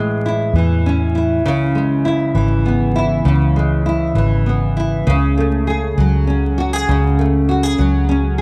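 A double-tracked nylon-string guitar, fingerpicked and full-bodied with a deep classical tone sitting up front, opens this tender, heartfelt six-eight pop ballad at 66 BPM, alongside a round, punchy, foam-muted vintage electric bass that plays throughout. The chords move from Amaj7 to C#m7 at 1.4 seconds and settle on F#madd9/C# at 5.1 seconds, tuned to A4 = 442 Hz. Light reverb and vinyl crackle color the dark, warm production of this short excerpt cut from a longer piece.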